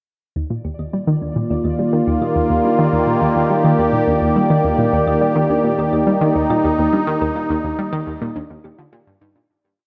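Over a straight 4/4 pulse, a bright, up-front analog pluck repeats a six-step sequenced riff that drifts against the bar, while a very quiet, tine-like thumb-piano synth traces a ten-step arpeggio loop that also drifts, with a filter sweep running over it. This short, expansive and luminous piece of ambient space music rests on an evolving, warbling vintage pad of slowly shifting chords with a resonant filter swell. A mellow, detuned gated texture holds a single high note in the background from 0.8 seconds. Everything sits in a dreamy wash of plate reverb, and the whole mix fades out from 6.5 seconds to the end at 9.5.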